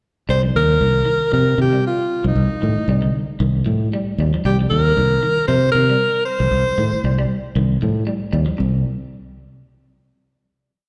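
A breathy alto saxophone with vibrato leads up front with a motif-based melody of call phrases over a bright, direct syncopated riff from the fingered electric bass and a clean, picked ostinato of arpeggios on the hollow-toned semi-hollow electric guitar, both horn and guitar carrying slapback echo, in this intense, defiant afrobeat piece at 116 BPM in C dorian, a short live groove on Cm7 heard through a venue's PA with recital hall reverb, where the saxophone drops out at 7.2 seconds before the piece settles into its final chord at 8.6 seconds.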